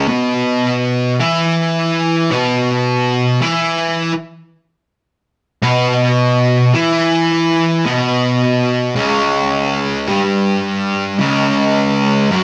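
Metal excerpt, sludgy and brooding at a slow 54 BPM with a swung feel, where a solo fuzz guitar, bright, picked and double-tracked, sits up front with distortion across a range from C#2 to E4, holding a Bsus4 before leaving chords behind at 9.0 seconds, all in a lightly reverberant room captured like a band playing live.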